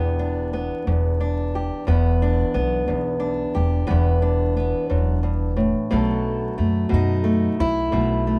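A boxy, fingerpicked steel-string acoustic guitar carries the melody up front over a woody, thumpy pizzicato upright bass in this mournful, soulful acoustic country blues excerpt in E minor, set at a slow 60 BPM in a straight 12/8, moving from Em7 to B7 at 5.9 seconds and heard from further back in a reverberant studio room through a layer of vinyl crackle.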